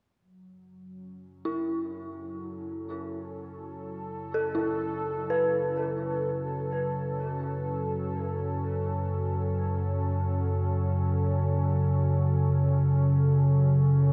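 Cavernous and unsettling, this dark ambient drone in F# minor drifts in free time on a single F#m7 chord, cut from a longer piece. A nasal, evolving sawtooth pad with ring modulation and chorus fades in from 0.2 seconds, joined at 1.5 seconds by an ominous, rumbling low drone sitting up front and an eerie, inharmonic FM bell playing arpeggios through chorus and diffuse delay. The mix is bathed in a wet cathedral reverb and carries the warbling pitch drift of worn cassette tape.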